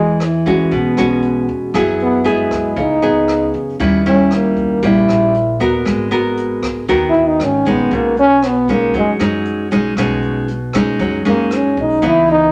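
A trombone and a fingerpicked nylon-string guitar open this intimate, wistful bossa nova together, with the trombone carrying a jazz-style solo melody up front from the first second. Its tone is warm, touched with light vibrato and scooped notes, while the classical-style guitar beside it sounds full-bodied, its finger squeak audible as it moves through lush chords such as E6/9, G#m9 and B6/9. Beneath them, a woody pizzicato upright bass sits in the background, and a natural-sounding brush kit joins at 0.2 s with hi-hat, rim clicks and a punchy kick. The straight groove stays steady across the whole passage, which is cut from a longer piece and runs to 12.5 s. A generous large-studio reverb gives the ensemble a soft, lingering bloom.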